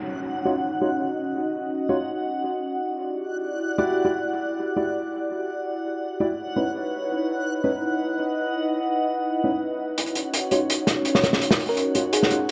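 Frenetic yet atmospheric, this drum and bass and jungle excerpt opens on an airy, breathy pad of sustained chorused chords under a filter sweep, joined by a brief electronic downlifter and a reversed, dreamy granular texture steeped in its own reverb. From 0.5 seconds a dark, boxy grand piano plays stabs through a low-pass filter and dub echo over shifting minor seventh and ninth chords. A gritty, saturated breakbeat kit of hi-hat and snare arrives up front at 10.0 seconds, and at 11.2 seconds a round, tine-like synth pluck adds a melody with cassette-tape colour, all set in a lush hall reverb with a dark production.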